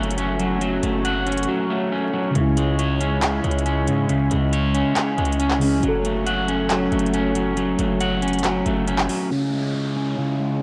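A dry, gritty hardware recording with vinyl crackle, light reverb and digital ambience carries this dark, hard-hitting excerpt of half-time trap hip hop at 138 BPM in C# minor, moving between F#m and C#m. An up-front, slightly broken-up electric guitar plays twangy, fingered arpeggios through spring reverb and tape echo. Beneath it sit soft, muted synth keys with chorus, a smooth, detuned analog pad holding sustained chords, a heavy, saturated 808-style bass, and a trap kit of handclaps and metallic hi-hats that drops out briefly at 1.5 seconds. By 9.3 seconds the keys, bass and drums have stopped, leaving the pad and guitar under a filter sweep and an electronic downlifter until 10.6 seconds.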